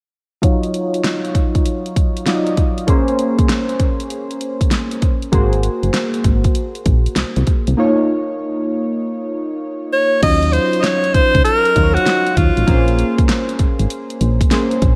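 A bright alto saxophone with pop-style vibrato takes a short solo from 9.9 to 13.3 seconds, riding over a slick new jack swing groove at 98 BPM with swung sixteenths. Beneath it, round analog keys with chorus and a filter sweep move through Ebm9, Bbm9, Ab9 and Db69, while a layered electronic drum kit with a fat snare, punchy kick and gated reverb drives the beat. A dark, round FM bass joins at 5.3 seconds, all set in light digital ambience in this clip from a longer piece.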